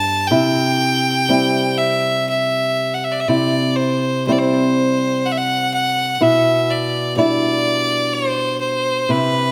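Wistful and nostalgic, this short cut from a longer Celtic slow air moves in a free, rubato three-time. A single bowed fiddle carries the melody up front, bright and biting with light vibrato and an intense, close presence. A dark, small-sounding fingerpicked nylon-string guitar accompanies throughout, moving from C to Em7/B at 6.2 seconds under a light reverb.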